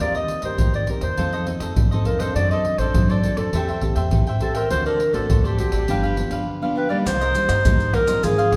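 Heard in a church or concert hall, this recording carries a wet recital-hall reverb with a 1.5-second decay. The short cut from a longer samba and choro piece feels nostalgic yet lively, moving in a straight four-beat pulse. A warm, classical-style clarinet carries the solo melody up front, its tone still distant and roomy, while a crisp, picked cavaquinho and a fingerpicked classical nylon-string guitar, complete with audible finger squeak, fill in the harmony. Beneath them, a woody pizzicato upright bass strung with steel strings holds the low end, and a deep surdo anchors pandeiro, maracas and tamborim in a close, small-room percussion blend. The chords move through minor-seventh and dominant shapes before the music turns to a new section at 7.1 seconds, landing on Cm7.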